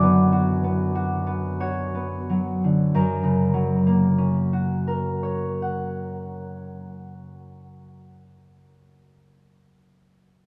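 A solo concert harp opens on a Bm/F# chord, its fingerpicked notes ringing up front and slowing over the first 2.9 seconds before settling onto F# major. This peaceful, dreamy classical fragment moves in a rubato 3/4 at roughly 41-52 BPM, spanning F#2 to F#5. A wet cathedral reverb with a 5.3-second tail lets each warm string linger through this short cut from a longer piece.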